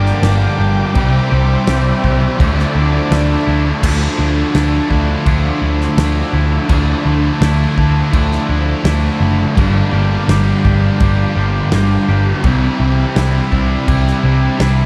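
Soaked in a huge, dreamy ambient reverb, this brooding, hazy shoegaze and dream pop fragment, cut from a longer piece, moves at an unhurried, straight 4/4 pace. A vintage sawtooth pad with detuned, warbling chorus and a resonant filter swell holds sustained chords at the opening, dropping out at 3.8 seconds. Three guitars carry riffs throughout: a thick, dark fuzz guitar with subtle chorus, a tight, double-tracked distorted guitar, and a clean, compressed, twangy electric guitar whose notes bloom through reverse reverb. Underneath, a round, foam-muted electric bass sits up front with a dark, amped tone, while a loose indie drum kit with a fat snare, tight kick and rolled-off top sounds like it was played in a small room. The harmony drifts through Gm7, Cadd9 and Dmadd9 before returning to Gm7 and Cadd9 near the close.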